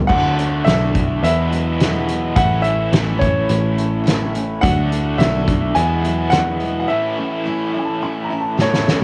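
A loose indie drum kit sits up front, with a punchy kick, a fat snare and dark cymbals heard from a distant, roomy studio space, closing with a fill at 8.6 seconds. This short folk rock and heartland rock excerpt has a nostalgic mood and a straight 4/4 feel, moving through Dadd9, Eadd9 and A. A bright, double-tracked garage guitar plays the riff with overdrive, tremolo and a cassette-tape grit, while a picked steel-string acoustic guitar plays along in the background with an auditorium-like glow. A growly, foam-muted electric bass, direct and amped, holds the low end until 6.9 seconds. A brilliant grand piano with short sustain carries the high melody through cassette tape and analog delay, and a woody, boxy upright piano adds a mellow second line from 7.8 seconds, with the whole home cassette recording wrapped in light studio reverb.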